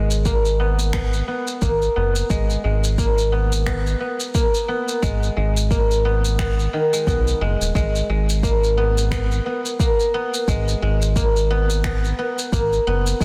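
Organic downtempo at 88 BPM in G# minor with a gentle 16th-note swing, this meditative excerpt sets silvery, ringing guzheng arpeggios, played with fingerpicks and treated with a low-pass filter and tape echo, up front beside a round, dark, detuned analog bass, while a deep electronic kick enters at 0.3 seconds alongside layered, tape-warmed electronic shaker and finger snaps with soft clipping on the snare, the passage resting on a G#madd9 chord in light reverb and a dense, heavily limited master.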